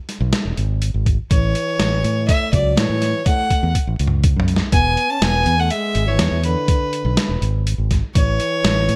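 Intricate and bright, this short progressive instrumental moves in an uneven 7/4 with a straight feel, cut from a longer piece. A gritty, compressed sampler-style boom bap kit, pitched down and tape-tinged, opens it up front with a thumpy kick, a medium-tuned snare, hi-hat and toms wrapped in gated reverb, and it breaks into a fill from 3.8 to 4.7 seconds. A fingered electric bass follows almost at once, direct and close, anchoring the low end. At 1.3 seconds a single bowed violin takes the melody with a dark, earthy tone, light vibrato and a smooth top, while a mellow jazz-style trombone carries a second line beneath it, sitting lower in the balance with vibrato and scooped notes. The harmony moves from A to E7 and back to A, all set in light reverb with a bright 1980s-style digital sheen.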